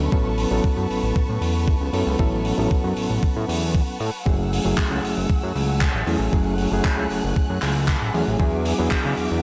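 A dry, gritty hardware recording in a small room, with transformer saturation and a top end that stops short of 7.9 kHz, frames this groovy, sensual slice of nu-disco, cut from a longer piece and running at 116 BPM in a straight 4/4. A thumpy, sampler-style electronic kick sits up front with a tape-warm tone and studio reverb, while a damped 70s acoustic kit adds airy, polished handclaps and hi-hat further back. A fat, detuned sawtooth analog bass with a fast attack and tube saturation holds the low end up front, with sidechain pumping. A reedy electric piano, lightly overdriven and heard through its built-in speakers, plays the accompaniment with tremolo, tape echo, a low-pass filter and sidechain pumping. Behind it, a distant, lush bowed violin section sustains expressive chords with vibrato, also pumping, as the harmony moves from A6/9 at 0.1 seconds to F#m9 at 4.3 seconds and E9 at 8.4 seconds.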